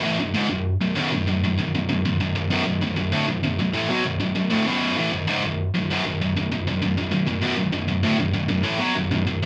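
A double-tracked, high-gain electric guitar opens this dark, aggressive metal fragment on a B5 chord, its picked, distorted tone bright and up front as it plays a solo across the full 9.5 seconds in a range from B1 to F#3. The tempo sits at a straight 98 BPM in 4/4, in B minor. A moderate studio reverb gives the sound the feel of a band playing live in one room, and the passage is cut from a longer piece.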